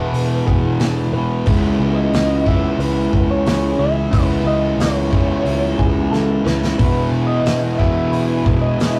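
A rough rehearsal-room recording with a short, wet booth ambience and warm saturation frames this blissful, hazy excerpt of shoegaze and dream-pop rock at 90 BPM in 4/4, where a soft, detuned FM synth lead with chorus carries the melody over a very quiet, bright clean guitar playing arpeggios, a hollow-body overdriven guitar and a dark fuzz guitar each playing a riff, a round, foam-muted bass, and an up-front loose indie kit with punchy kick and fat snare that plays a fill at 6.1 s before a lush, mellow string machine enters very quietly at 6.8 s as the harmony moves from E and C#m7 to Emaj7.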